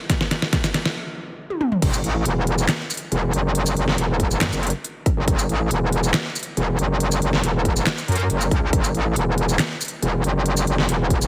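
Menacing and heavy, this half-time wobble dubstep excerpt opens on a short build-up of drum fills, broken by a brief stop, with the dubstep drum kit and a punchy, layered electronic kick. At 1.8 seconds the drop lands with a metallic wobble bass, bright, aggressive and distorted with chorus and overdrive, sitting up front in a low register beneath the kit's deep snare, crisp hats, handclaps, shaker, toms and crash. The whole mix has a heavily compressed radio sound with light reverb and a faint mains hum, and the drums carry a tape-warm character.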